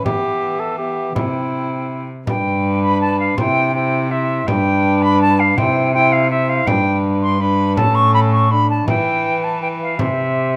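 Opening on a mellow cor anglais second line, a clear, roomy trombone accompaniment and a rich, gut-string bowed cello bass, this solemn, courtly renaissance-style consort dance in 3/4 at 163 BPM, cut from a longer piece, brings in a pure, expressive silver concert flute melody with vibrato and crisp attack at 0.1 seconds alongside a small, bright, saturated frame drum played with hard hands, all set in a moderate recital hall reverb and captured by close, detailed microphones.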